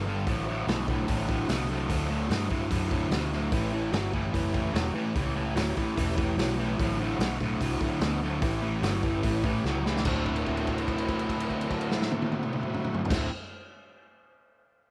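A distorted electric guitar riff opens this gritty, swaggering blues rock and southern rock excerpt, bright and double-tracked up front, joined from the start by a dark, round, foam-muted electric bass and a very quiet tonewheel organ holding sustained chords through a slow rotary speaker and chorus vibrato. The vintage acoustic drum kit comes in at 0.3 seconds with a punchy kick, a medium-tuned snare, hi-hat, toms and crash cymbal, its rolled-off top sitting up front in a natural small-room sound. At 147 BPM in a straight 4/4, the music moves through D7 and A7 in D mixolydian, carried by the picked, compressed guitar and the amped bass. A drum fill at 9.7 seconds leads into a closing section at 10.1 seconds, where the harmony settles on D9 under a held note. Light reverb and small room ambience give the trio a close, live feel as this fragment of a longer piece cuts off.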